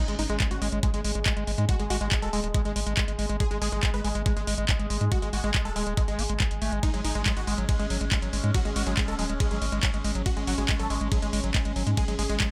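Hypnotic and psychedelic, this 140 BPM psychedelic trance excerpt in straight 4/4 over a G#5 chord drives a knocking, up-front electronic kick and a layered drum and bass kit of handclaps, metallic hi-hat and ride beneath a round, deep analog bass, a squelchy overdriven acid bass riff with 12-bit grit and tape echo, a bright detuned supersaw stab melody with phaser and dub echo, and a slow-blooming drone of moving overtones washed in chorus and reverb, the synths pumping to the sidechain inside a digital ambience.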